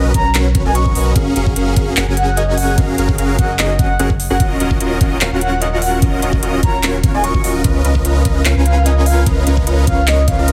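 Future bass with a bright, euphoric mood and a half-time feel, this short cut from a longer piece opens on Bmaj9 and moves through F#maj9, D#m9 and C#13. A huge, detuned supersaw carries the riff from the start, up front and heavily compressed, with a moving notch and sidechain pumping that makes it breathe against the beat. Beneath it, a thick, tube-saturated sub bass holds the low end with a fast attack and the same pumping motion. A breathy, flute-like synth lead sings the melody from 0.1 seconds, its soft attack and vibrato dressed in lush chorus, cassette tape colour and digital delay. A knocking electronic kick and a trap kit with handclaps and crisp hi-hats drive the rhythm in a small room, and the overall sound is dry and squeezed like a loud radio broadcast.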